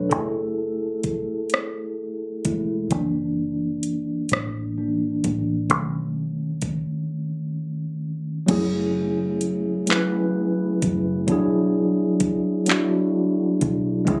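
A mellow tine electric piano with plate reverb opens over a round, foam-muted fingered bass and a produced electronic R&B kit with a knocking kick, metallic hi-hats, handclaps and rim clicks, all in a slow, late-night six-eight groove at 43 BPM in F# minor. The up-front piano carries a yearning solo over F#m9, F#7alt and B9 before a break at 7.1 seconds, then the second section moves between F#m9 and E9. Captured on a phone in a club-like room, this short excerpt has a moderate reverb.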